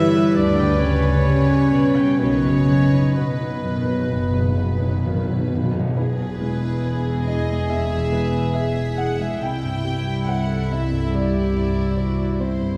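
Hard-mallet timpani sit up front, close and dry, with an articulate fill from 2.2 to 5.9 seconds in this cinematic, emotional film score for orchestra, moving and uplifting at a rubato 61-72 BPM in 4/4. A violin section carries the melody with a soft-attack, sul tasto sound that is pure and floating, while a second, fuller-toned violin section adds another line above it. An oboe with light vibrato and a mellow clarinet in the background each add a brief solo line at the start, over a dark viola section and a felt-muted upright piano whose thick felt and audible action noise give an intimate tone. Beneath them, a tight French horn section holds sustained chords, and a warm cello section and a bowed chamber double bass section supply the bass. The harmony moves through G, B, E and C, and a wet scoring-stage reverb places this orchestral excerpt further back in the room.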